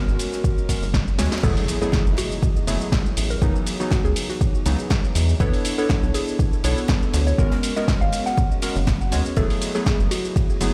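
A rubbery, hollow square-wave bass and an overdriven electronic kick sit up front in this deep, moody deep house excerpt, where round analog keys stab through chorus, tape echo and sidechain pumping above a punchy analog drum machine, a very quiet airy acoustic kit and a cloudy granular pad, until the drop at 1.4 seconds brings in a woody, mallet-like synth pluck colored by chorus, phaser and dub echo, along with a background impact, all inside a large studio reverb.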